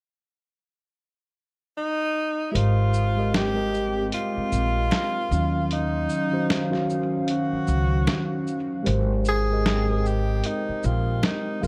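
A loping 76 BPM groove in 4/4 with a swung sixteenth-note feel sets up this dreamy, cosy lo-fi hip hop clip in Ab major, cut from a longer piece. A tenor saxophone opens the melody alone at 1.8 seconds, its subtone, vibrato and scooped notes sounding distant and roomy yet up front, trailed by dub echo. At 2.5 seconds a woody pizzicato upright bass and a mellow tine electric piano with cassette-tape colour and dub echo arrive, followed at 2.6 seconds by a gritty, pitched-down boom bap kit of hi-hat, shaker and medium-tuned snare, while a dark, detuned analog pad with chorus and a slow attack settles into the background from 3.1 seconds. Very quiet finger snaps add a human touch from a live room. The harmony moves from Abmaj9 to Ebm9 and back, and the whole echo-heavy mix sits in light reverb and small room ambience for a hazy, intimate sound.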